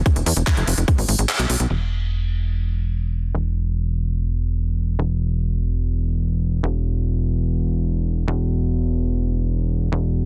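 A tight, punchy sequencer bass drives this intense psychedelic trance passage in E major at 146 BPM, its sawtooth and square-wave tones ringing with ring modulation and tube saturation as each plucked note snaps in and decays, running up front from start to finish. An electronic kick and a layered garage kit with crash cymbal, handclaps and crisp, low-pass-filtered hi-hats share a tape-warm, large-room character, the kit sitting up front. They join at 0.1 seconds, mark a band accent at 1.3 seconds and fall away by 1.8 seconds, leaving the bass to carry the rest. The sound is dry, dense and heavily limited.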